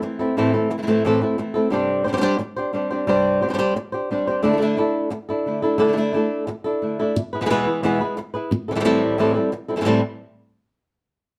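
A dark, moderately reverberant studio sound frames this fiery, intense flamenco excerpt in A minor at 177 BPM, where an up-front fingerpicked acoustic guitar carries the melody with audible finger squeak while a second fingerpicked guitar adds lower stabs, both playing from 0.0 to 10.0 seconds over a progression moving from Am through Gsus4, Dsus2 and E to Am7.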